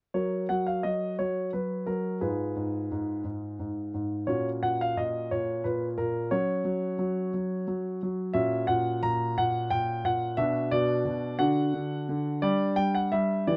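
Playful and cheerful, this classical-period piano sonatina moves at 58 BPM in 6/8, set in F# major and cut from a longer piece. A single warm concert grand plays solo from 0.1 s to 13.6 s, its natural tone carrying a deep bass and sitting up front in a close, detailed, nearly dry recording. The harmony moves from F# through G#m6 and F#/A#, then turns through Bm and D to G5 near the close.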